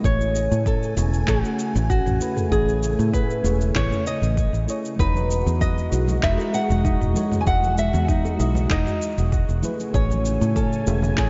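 Smooth and relaxed, this sunset chillout excerpt pairs a dark, fingerpicked nylon-string guitar melody drenched in lush chorus and diffuse ambient delay with a round FM electric piano and a silky string machine, all resting on an up-front, foam-muted fingered electric bass, a deep tape-warm electronic kick and a layered deep house kit of cabasa, handclaps and toms, while a ringing concert harp with tape echo and very quiet, distant congas and bongos join at around 5.0 seconds as the chords move from Amaj7 to Emaj9, everything floating in a dreamy, reverb-soaked hall.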